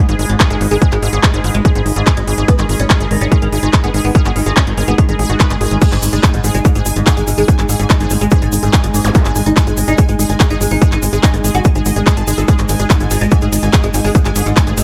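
A heavy, tape-warm electronic kick drum sits up front in this intense psychedelic trance passage at 144 BPM in G# minor, cut from a longer piece. Beneath it, a tight, punchy sequencer bass drives the low end with a sawtooth and square-wave tone edged by ring modulation, while a layered techno kit adds smooth hi-hats, handclaps, ride and crash cymbal, re-recorded in a small room. A lush, detuned unison pluck plays a bright riff with a noise layer and dub echo, pumping against the kick alongside a breathy, airy pad that carries chorus in the background. Further back, a woody, fretless oud with double strings plays the melody through phaser and dub echo, and a very quiet, resonant drone holds sustained chords with moving overtones and a shifting notch. A grainy egg shaker joins at 5.8 seconds, and a brief electronic zap flickers at 9.0 seconds, all set in a digital ambience.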